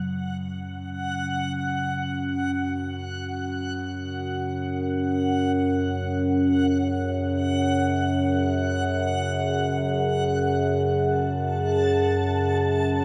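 Drenched in a vast cathedral reverb, this ominous dark ambient drone excerpt, lasting 13 seconds in free time, sets a resonant, chorused low drone of sawtooth and sine tones with moving overtones up front, while a quieter, bright, reversed and detuned granular texture swells dreamily above it through shimmer reverb.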